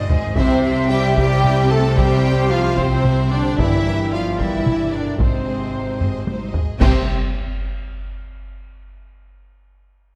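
This heroic, triumphant passage of epic orchestral film score, cut from a longer piece, opens on a fill from a close, dry taiko ensemble struck with heavy sticks. Beneath it sit lush bowed cellos and double basses, a background line of smooth, rich violins, and a pure, soft-attack silver concert flute. Moving in 6/8 at 74 BPM, the music brings in its melody at 0.4 s on a clear, intense chamber violin section. Beneath it, even violas and sustained chords from a dark, distant French horn section and a warm trombone section carry the harmony from C through Gm to Ab. Round, soft-mallet timpani with calf heads sound in the background at intervals, and a second taiko fill leads to a band accent at 6.8 s, where up-front clash cymbals and concert bass drum strike as the chords drop away. The recording sits in a wet scoring stage reverb.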